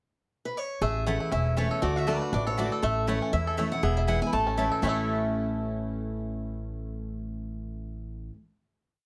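Rustic and driving, this short bluegrass piece swings lightly, opening with a boxy parlour guitar picking out a pickup phrase alone at 0.5 seconds before most of the band arrives at 0.8 seconds, with a mandolin joining at 1.1 seconds. That up-front lead guitar states a motif-based melody in balanced phrases, while a lap resonator guitar, played with fingerpicks and slide, weaves a metallic, nasal counter-melody beneath it. A full-bodied dreadnought guitar, with an audible finger squeak, supplies alternating bass notes and strums, and a twangy banjo rolls out percussive three-finger arpeggios touched with tape echo. Holding the bottom, a woody, thumpy upright bass sits up front with a two-beat root-and-fifth pattern, and the round-toned mandolin chops on the off-beats. The band moves through a single pass of the tune before landing on a final chord at 4.8 seconds that rings out in a small, moderately reverberant room.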